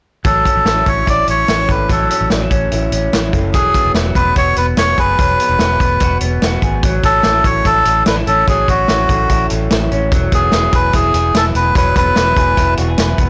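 Blown-out and overdriven, with a light reverb around it, this short cut from a longer piece of jangly indie pop sounds bright and youthful in a straight four. A reedy, breathy melodica with a nasal, plastic-cased tone carries the melody up front, its line dressed in tape echo and stopping at 12.7 seconds. Beneath it, an electric guitar through a small old amp picks twangy, slightly broken-up arpeggios with a lo-fi edge, also touched by tape echo. A dark, foam-muted fingered bass with a round, amped tone holds the low end. A vintage kit of hi-hat, punchy kick and medium-tuned snare sits up front with a mid-forward, rolled-off top in a studio room, while the harmony moves between A6 and Eadd9 and a second section begins at 6.8 seconds.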